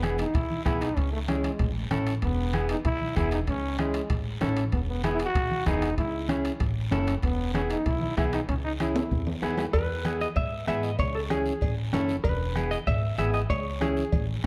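Joyful and festive, this cumbia in 4/4 is cut from a longer piece and moves with a straight dance feel over a cycle of E, C#m and A chords. Up front, a growling trombone takes the lead with a raspy, gritty, pop-style solo full of vibrato and scooped notes, playing until 9.2 s. At 9.7 s, a bright, clean, picked hollow-body electric guitar takes over the melody, colored by spring reverb and slapback echo. Beneath both, a second semi-hollow guitar supplies compressed, fingered accompaniment close to the front, while a woody, thumpy upright bass with steel strings anchors the low end with a growly pizzicato tone. A soft-beaten bombo and low-tuned congas sit in the background, ringing metal-shell timbales with cowbell add a bright accent, a close, dry guiro adds texture, and drum fills mark the end of each section within a dark, roomy studio sound.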